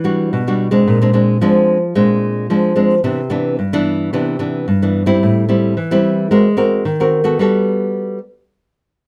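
A straight samba groove in 4/4 carries this sunny, joyful fragment of a longer piece, played by a lone nylon-string guitar. The guitar is fingerpicked in a classical manner, with an acoustic warmth. It moves through rich extended chords from Em9 to a closing Gmaj9, and it stops at 8.2 seconds. Close, detailed miking keeps the instrument up front, and a light reverb gives it a touch of space.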